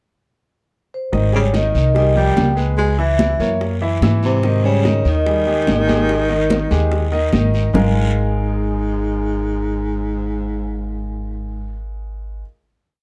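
A vibraphone played with medium mallets opens this short, lively Afro-Cuban jazz piece at 0.9 seconds with a metallic, ringing pickup phrase, its motor off and its sound set in a boxy small room. At 1.1 seconds the band arrives at a danceable 145 BPM in straight 4/4 in Ab major: an up-front, woody pizzicato upright bass plays a tumbao that anticipates the chords, while a clear concert grand piano with deep bass plays a montuno in octaves. In the background, high-tuned congas played with soft hands mix slaps and open strokes, tight high-tuned bongos with hard hands keep steady eighths alongside a hand bell, and a raspy, vintage-sounding guiro adds long and short scrapes. A baritone saxophone carries a jazz-style second line with vibrato, subtone and octave doubling beneath the vibraphone's motif-based call phrases. The percussion drops out at 7.8 seconds as the group settles onto an Absus2 final chord. 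Light reverb and a dark, warm production round out the sound.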